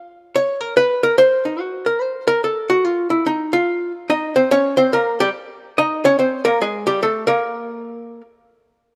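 Jazz in a warm, sophisticated mood, swinging in 3/4 at 144 BPM. This short cut from a longer piece features a lone electric archtop guitar, dark, clean, compressed and up front, picking a hollow-body solo from 0.4 to 8.2 seconds over Cmadd11, Eb7 and Abadd9 harmony, set in a moderate plate reverb.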